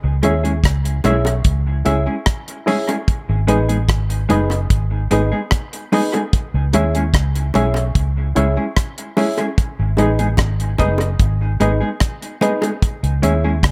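Light reverb and a small room ambience frame an echo-heavy mix in this roots reggae excerpt, which moves at 74 BPM in a straight 4/4 with a hypnotic, serious mood. Up front, a vintage muted fingered electric bass sounds dark, round and amped with a foam-muted tone, while the harmony alternates between C# minor and G# minor. The deep reggae drum kit is acoustic and dry, with a tight kick up front alongside hi-hat and rim click, and both the kit and the mellow electric guitar carry dub echo. The guitar is clean, fingered and compressed, and the reed electric piano adds reedy, worn, slightly out-of-tune stabs heard through its built-in speakers. Very quiet, high-tuned bongos played with soft hands add a saturated acoustic touch before they stop at 12.8 seconds, as the chords return to C# minor.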